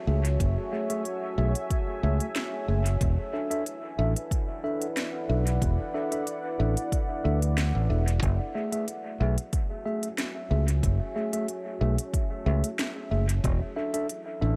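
A deep, dark ambient pad opens this hazy, spacious ambient dub excerpt, its detuned sawtooth chords drifting through chorus and reverb, while a mellow tine electric piano drops clean stabs into dub echo and a fingered electric bass sits up front with a warm, direct tone. A deep, overdriven electronic kick thumps up front beneath an organic electronic kit of woody snare and crisp hi-hats, the kit steeped in dub echo and a large-room sound. The harmony sways between F#m9 and E7sus4 at a relaxed, lightly swung pace, all set in a light digital ambience.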